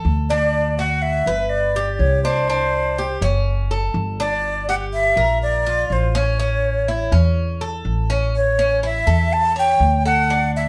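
Relaxed and warm, this short cut from a longer Cuban son and guajira piece moves in a straight, easy 4/4 as a band plays together live in one room with a moderate studio reverb. The upright bass sits up front with dark, woody plucked tones. The bright, metallic Cuban tres spins out picked arpeggios on its doubled strings. From 0.3 s, a breathy jazz flute carries the melody with soft attacks, vibrato and lifted highs, its tone a little unsteady and its slapback echo trailing behind as the chords pass from D through G, Csus2 and F#m to Bb and A, before a new section begins at 8.3 s.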